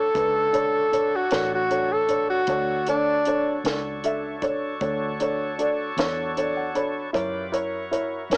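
Brooding and smoky, this slow blues in 12/8 is led by a breathy, up-front tenor saxophone with light vibrato and scooped notes, over a woody, slightly detuned upright piano. A gritty, overdriven tonewheel organ holds thick chords through a slow rotary speaker, while a round, foam-muted electric bass and a compact cocktail kit with a punchy kick and high-tuned snare sit low in the mix; the piano slips in a fill from 6.0 to 7.1 seconds, leading into the move from a rootless Bm9 to F#7. Cut from a longer piece, it has the hazy character of a home cassette recording heard through a small speaker, with light reverb.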